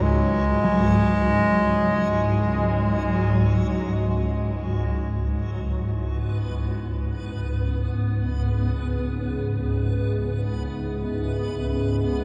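A swarming, detuned drone sits up front in this cavernous, dark ambient piece in free time and C# minor, joined by a distant bass clarinet melody that ends at 3.9 s, a ringing bronze gamelan-type metallophone playing arpeggios in the background with shimmer reverb and tape echo, a very quiet, deep pad holding sustained chords that move from Eadd9/C# to C#m at 5.1 s, and a reversed, swelling, bright texture, all bathed in a long cathedral reverb.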